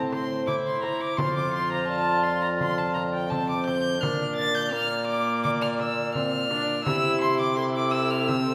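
A solemn, courtly renaissance-style consort dance opens with an airy, hollow tenor recorder carrying the melody, tongued with a touch of chiff, over a gut-string viola's smooth, lightly vibrato accompaniment and a distant, roomy trombone bass. A rich, up-front violin enters on a high second line, and a small, bright frame drum adds percussion, while the harmony moves from A minor through F5 and B-flat to C in a straight 4/4. Recital-hall reverb lends the consort a wet, church-like space in this passage cut from a longer piece.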